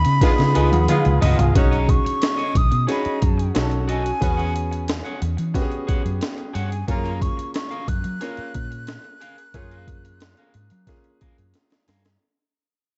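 A straight 4/4 groove at 90 BPM, set by a gritty, pitched-up breakbeat sampler-style drum kit with a thumpy kick and high-tuned snare, drives this lush 1970s-style soul excerpt in F# major, with a foam-muted fingered electric bass up front beneath it. A breathy, hollow jazz flute with vibrato carries the melody over clear, intimate grand piano with audible action noise, a twangy, slightly broken-up electric guitar riff and distant, tight horn stabs, as the chords move from C#9 to F#maj9. After a band accent and drum and piano fills in the opening 1.6 seconds, the music fades out through a dark, dry mix, with a closing drum fill at 11.5 seconds.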